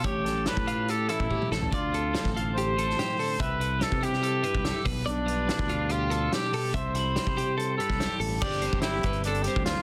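Dense and heavily limited with a light reverb, this wistful, intricate slice of math rock and midwest emo is led by an up-front trumpet with light vibrato and a vintage, punchy tone, carrying the melody over chords that move from A7 through Dm7 to Cmaj7 and settle on Gsus4 at 8.4 seconds. Two clean, compressed twelve-string electric guitars fill in beneath it: one bright, holding down the accompaniment, the other warm and tucked in the background, picking arpeggios through spring reverb and tape echo. A direct-sounding fingered electric bass anchors the low end, while a loose, roomy indie drum kit with dark cymbals, a medium-tuned snare and a rolled-off top drops in a fill at 1.3 seconds.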